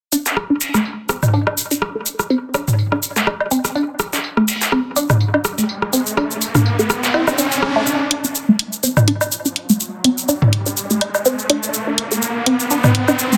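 Quirky and sparse, this short cut of minimal techno moves at 124 BPM in 4/4 with a light 16th-note swing. A resonant blip pluck carries the riff from start to finish, its squelchy, ring-modulated tone colored by phaser, analog chorus and dub echo, while a filter sweep runs across this synth line. Up front, an electronic shaker and hi-hat layer plays throughout, joined by an organic electronic kit of rim clicks, toms and woodblock, treated with dub echo and soft clipping on its snare. A gritty, sampler-style breakbeat kit of hi-hat, snare and tambourine sits lower in the mix, filtered and tape-warm, until it drops out at 7.8 seconds. An electronic riser enters at 5.5 seconds, and from 7.9 seconds the second section becomes a build-up. A small room gives everything a short ambience, and the master is dense and heavily limited.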